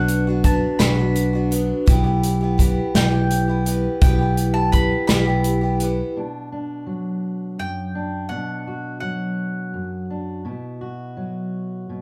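Wistful and bittersweet, this slow indie folk passage in B minor sways in 6/8 at 56 BPM, its building arrangement recorded as a band playing live in one room with a wet studio reverb. A round, double-strung mandolin carries the melody until 10.0 seconds over a bright, boxy parlour guitar, mellow soft-mallet vibraphone arpeggios with a vintage shimmer, an up-front fingered electric bass and a polished, airy country drum kit with a punchy kick, all moving from Bm to Em/B. After the drums and bass stop at 6.0 seconds, a dark, fingerpicked auditorium guitar takes over the accompaniment from 6.2 seconds, settling on a Bsus4 near the end.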